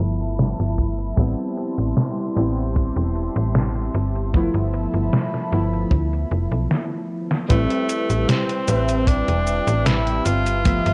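Vaporwave with a melancholic, nostalgic mood, cut from a longer piece: warbling, detuned lo-fi synth keys with a filter sweep and a slow-blooming, phaser-tinged tape-like pad carry the chords over a snappy, metallic FM slap bass, an overdriven, detuned 8-bit drum machine of cabasa, hi-hat and snare, and a dry, tight acoustic kick entering at 0.8 s, and after a brief break and drum fill a clear tenor saxophone with light vibrato and tape echo takes the melody at 7.5 s, all bathed in worn cassette pitch drift.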